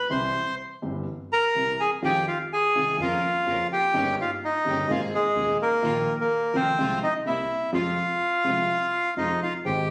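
Passionate and tense, this rubato tango excerpt in F minor at 126 BPM puts a reedy, bright bandoneon up front with plate reverb over an intimate concert grand piano with audible action noise and deep bass, a woody, growly pizzicato upright bass in the background, and clear, lightly vibrato bowed symphonic strings adding background stabs from 2.0 seconds, all captured on a phone in a large studio room with moderate reverb.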